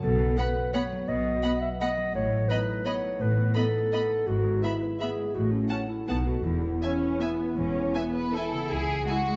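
Sweeping and festive, this rubato orchestral ballroom waltz fragment sets an up-front, dark clarinet second line over ringing, fingerpicked concert harp arpeggios, a woody double bass section and a focused cello section, joined at 0.4 seconds by a distant, lush violin melody, a second violin line with a smooth top and an expressive viola accompaniment, all bathed in a recital hall's reverberant glow.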